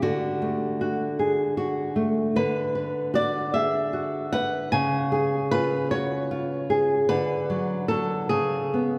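Tender and serene, this romantic guitar duo in 6/8 drifts with rubato at about 51 BPM, counted in dotted quarters and tuned to A4 = 442 Hz, as an up-front flamenco guitar with warm, fresh strings and audible finger squeak fingerpicks the melody while an up-front, warm classical nylon-string guitar fingerpicks the accompaniment through D, Bm/D, C#, D6 and C#7(no3), all bathed in the lingering reverb of a church or concert hall across this 9-second fragment of a longer piece.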